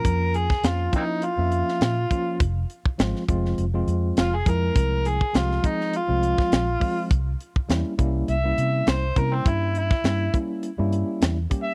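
Straight-eighth soul blues with a light sixteenth-note swing, this brooding, soulful excerpt puts a gritty, overdriven harmonica solo, full of vibrato, tongue slaps and scooped notes, up front over a clean tine electric piano heard through its built-in speakers, a dark, round, foam-muted fingered electric bass and a tight small-room funk kit with a high-tuned snare, in a dry, close 1970s-style studio recording as the chords move from Bbm to Fm to C7b9.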